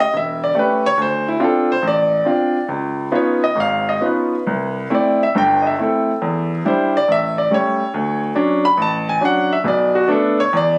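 Captured on a phone with light reverb and a studio ambience, this brief swinging, smoky solo jazz piece features a clear, intimate baby grand piano sitting up front, its audible action noise and long sustain carrying a rubato, swung performance spanning the deep bass and the upper register through chords such as A7, Dm7, C#9 and Dmaj7 across its 10.8 seconds.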